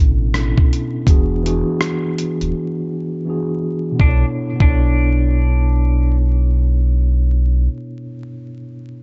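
A lazy 82 BPM groove in 4/4, swung on the sixteenths, opens this hazy, melancholic lo-fi hip hop excerpt in B dorian, moving from Bm11 to E7 and back to Bm11 at 4.0 seconds. A dusty, sampler-style drum kit sits up front with hi-hat, rim click and a thumpy kick, its compressed, gritty hits carrying vintage 12-bit sampler crunch until 4.8 seconds, with a break between 2.5 and 4.0 seconds. Underneath, a deep sine sub bass with an octave plays full, sustained notes with a fast attack until 7.7 seconds. A mellow tine electric piano, clean and filtered, comps through its built-in speakers for the full 9 seconds. From 4.0 to 6.2 seconds a dark, slightly broken-up electric guitar through a small old amp plays a fingered, low-pass-filtered figure on D4 with analog delay, sitting quietly in the mix. Vinyl crackle and a digital ambience wrap the track, with its top end rolled off above 7.9 kHz.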